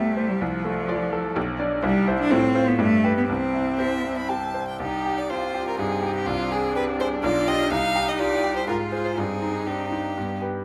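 In a 3/4 at 124 BPM, played with a flexible rubato, this quick classical-period movement for piano quartet opens cheerful and lively in C major before turning to C minor at 4.8 s. The violin carries the melody up front with a clear, focused, close tone and vibrato, while the cello shapes a second line beneath it, its bowed sound equally distinct and vibrant. A bright grand piano supplies the accompaniment with a brilliant, intimate presence, long sustain and audible action noise. The viola sits in the background, adding a smooth, even, warm inner voice. The quartet is heard through close, detailed microphones in a recital hall with moderate reverb, in an excerpt cut from a longer piece that ends at about 10.6 s.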